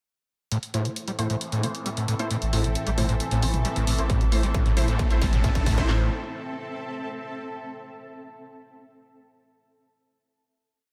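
A straight, driving pulse propels this short, industrial and intense peak-time techno piece, with programmed closed and open hats and low toms sitting under a pumping sidechain from the start. A squelchy, screaming acid line enters at 0.5 seconds, its resonant sawtooth tone distorted and lightly chorused, cycling a 7-step loop with accents and slides that drifts against the bar while tape echo trails behind it. Syncopated rave stabs, thick and detuned with a bright filter pluck, move one chord shape in parallel, and an overtone-sweeping drone and a blurred granular cloud pad with slowly shifting chords fill the background with reverb. A deep, saturated sub bass adds a low rumble from 2.4 seconds as a filter sweep on the acid line builds tension. From 4.1 seconds a second, up-front kit lands a four-on-the-floor distorted kick, cracking snare and handclaps in a drum fill, joined by a very quiet riser. 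The piece closes on a final A minor chord carried by the pad's lingering haze, set in a light digital ambience.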